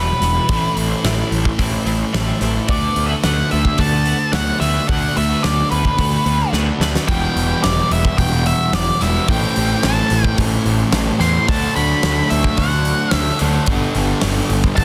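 Quiet-loud alternative rock in A dorian at 109 BPM, brooding and angsty, heard as a 14.8-second cut from a longer piece. A dark octave-fuzz lead guitar carries a solo melody throughout, over a fuzzed, compressed riff guitar sitting in the background and a growly, overdriven picked bass pushed up front. A clean twelve-string electric guitar adds compressed arpeggios with tremolo and tape echo until 7.1 seconds, when a bright, raw garage guitar takes over with its own overdriven riff. The big rock kit enters at 0.2 seconds in an airy stone room, with a fat, softly clipped snare and a punchy kick, and a drum fill leads into the change at 7.1 seconds. The chords move through Am, D6, Em and back to Am and D6 before landing on G, all wrapped in studio reverb and a dense, heavily limited modern master.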